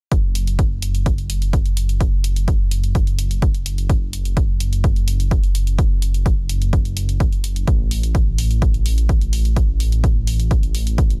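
Dramatic and melancholic, this melodic techno excerpt in F# minor moves at 127 BPM in a straight 4/4, driven by a punchy, up-front electronic kick and a tape-warm analog hi-hat beneath a deep, rumbling detuned saw bass, dark and saturated with beating tones, sidechain pumping and a filter sweep running from 0.1 to 11.2 seconds, all set in a digital ambience.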